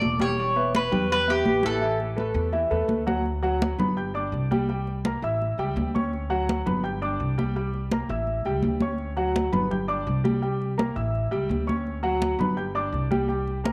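A metallic, double-strung Cuban tres carries the melody with tape echo for only the opening 2.0 seconds of this relaxed, danceable excerpt of Cuban son and guajira at 167 BPM in D major. A worn, vintage grand piano spills smooth arpeggios throughout, over a woody, thumpy gut-string upright bass and ringing, high-tuned congas played with soft hands. Everything sits in a small room with a wet spring reverb, and after an opening on Em and Asus2 the chords cycle through D, G5, C7, A7 and Dmaj7.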